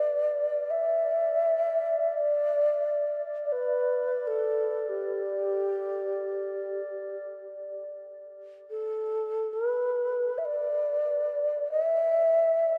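A mellow, hollow bamboo xiao carries the melody up front through the whole 12.8-second fragment, its end-blown tone crisp in attack, shaded with vibrato and trailed by tape echo. Beneath it, a glass harmonica holds an ethereal, beating D5 with a slow attack until 7.3 seconds. A huge, wet ambient reverb surrounds this peaceful, calm, meditative world music.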